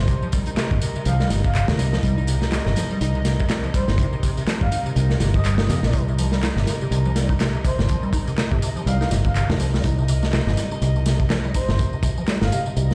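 A foam-muted fingered electric bass sits up front with a punchy, direct tone, anchoring this energetic, funky breakbeat excerpt at 123 BPM with a 16th-note swing in C minor pentatonic over a Cm7 chord. A crunchy, saturated breakbeat kit with a dark, rolled-off top drives the groove from 0.1 seconds, alongside a tape-warm analog drum machine adding handclaps, hi-hat and tambourine, while a rubbery, resonant acid bass with dub echo bubbles in the background. Floating, bowed studio strings carry sustained chords with 12-bit sampler grit and sidechain pumping, and a breathy, flute-like synth lead with vibrato, chorus, an old-record sound and dub echo plays the melody until 12.6 seconds, all set in a large studio reverb like a big sound system in a bare room.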